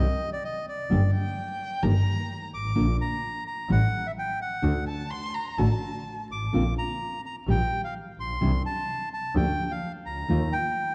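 Passionate and dramatic, this short tango excerpt moves with a rubato feel in 4/4 under a dark production touched by vinyl crackle and a moderate concert hall reverb. A reedy, mid-forward bandoneon carries the melody and sits up front. A full-bodied nylon-string guitar supplies fingerpicked accompaniment with a deep classical character, while a single bowed double bass, clear and earthy with light vibrato, anchors the low end. A lone bowed violin joins at 1.1 seconds with a shadowy second line, colored by vibrato and expressive portamento, before dropping out at 6.2 seconds. The harmony travels through minor and dominant colors, including an A7 resolving to D, and closes on an unsettled Ebsus2.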